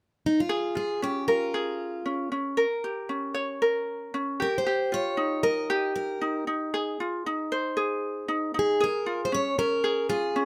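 Tender and reflective, this short pop excerpt sets a picked, plugged-in steel-string acoustic guitar carrying a warm melody from 0.3 seconds against a bright, fingerpicked ukulele accompaniment from 0.5 seconds, both placed up front in a close, detailed recording with light reverb, a gentle sixteenth-note swing and chords that pass through minor-seventh, diminished and add9 colours.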